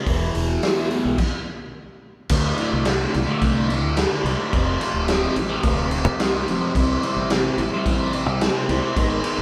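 Psychedelic rock in D dorian at 108 BPM, this trippy, dark excerpt from a longer piece has the feel of a band playing live together in one room with a touch of light reverb. A fuzz guitar drives the riff from the first moment, its bright, distorted, double-tracked tone colored by a phaser, while a fingered electric bass sits underneath with a round, direct sound. A raw garage drum kit sits up front with a punchy kick, a medium-tuned snare, hi-hat and crash, its saturated, gritty character shaped by a rolled-off top. In the background, a mellow tonewheel organ holds soft, flute-like sustained chords through a slow rotary speaker. The band hits a stop from 1.2 to 2.3 seconds, then moves into a new section where the chords move through Dm, F and C.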